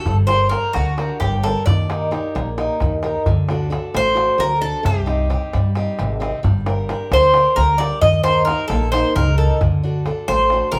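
Greek folk music from a bouzouki band, this short excerpt moves at a brisk 265 BPM counted in eighths, in a straight 7/8 that gives it a tense, dramatic drive in D phrygian dominant. The bouzouki carries the melody up front, its bright, metallic double strings ringing with some octave-doubled courses as it stays between F#4 and Eb5. Behind it, an old ladder-braced acoustic guitar picks out the accompaniment with a woody, boxy tone from aged strings, while a pizzicato upright bass with steel strings sits prominently in the low register, dark, growly and thumpy. A metal-shelled darbuka, played close with hard hands, adds a crisp yet deep pulse. The chords cycle through Gm, Eb, D and Cm, with the passage shifting into a new section at 3.3 seconds, and the whole band plays live together in one room bathed in a moderate large-studio reverb.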